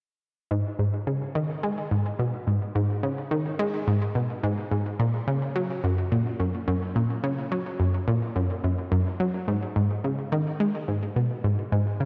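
A round, detuned analog pluck plays alone from 0.5 to 12.1 seconds in this cosmic, hypnotic ambient fragment, its bright, up-front low notes treated with chorus and delay and soaked in a lush hall reverb with a dreamy cassette-tape haze, moving into a new section at 9.5 seconds.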